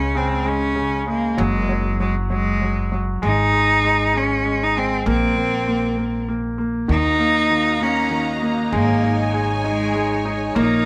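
A focused, bowed solo cello carries the melody up front with vibrato in this tender, swaying six-eight pop ballad at 65 BPM, tuned to A4 = 439 Hz, over a natural-sounding concert grand piano with deep bass and long sustain and a woody, thumpy pizzicato upright bass, while a lush, intimate studio string section playing sul tasto joins with sustained chords at 6.9 s, the band captured live in one room with moderate large studio reverb in this short cut from a longer piece.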